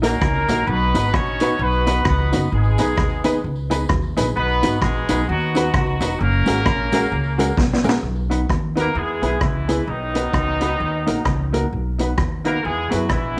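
A swung ska beat drives this joyful, upbeat cut from a longer piece, with a street-band drum kit up front pairing a high-tuned snare and boomy kick with hi-hat and rim clicks, while a plucked upright bass adds a woody, steel-strung low end. A punchy, vintage horn section carries the melody in octave doubling with light vibrato, backed by slightly detuned upright piano stabs with long sustain and a dark, clean, fingered electric guitar set in the background. A jingly tambourine with tape echo sits far back until 7.9 s, and a drum fill at 7.6 s leads into a second section at 8.0 s, all bathed in moderate plate reverb.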